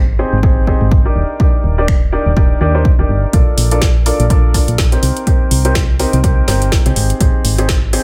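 Set in a digital ambience, this short clip of euphoric, joyful piano house moves at 124 BPM in 4/4, with a 57% swing on the 16ths. A solid FM bass holds the low end from the first moment, its round, dark tone giving a fast, punchy attack that decays and pumps with sidechain compression. A clear, woody upright piano with a smooth, vintage character plays the riff from 0.2 seconds, softened by a low-pass filter and trailed by digital delay, and it also pumps with the sidechain. A punchy analog-style electronic kick arrives at 0.4 seconds with small room ambience. At 1.9 seconds a layered, produced garage kit joins with finger snaps, a snare and metallic hi-hats, sitting lower in the mix. The harmony moves through Abmaj7, Ebmaj7, Bbmaj7 and Cm7 before returning to Abmaj7.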